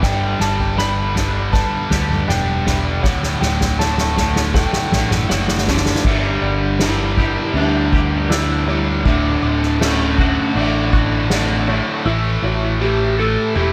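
A slightly broken-up electric slide guitar carries the soaring melody through analog delay in this cinematic post-rock excerpt at 80 BPM in D major, riding over a double-tracked distorted guitar riff, growly, punchy picked bass, a twangy chorused guitar arpeggio and a mellow felt-muted piano arpeggio with audible action noise in the background, a very quiet brassy, detuned analog pad sustaining chords, and a soft-mallet drum kit with dark cymbals and a boomy kick that builds with a fill through the first 6.0 seconds and drops out at 11.9 seconds, all in light small-room ambience.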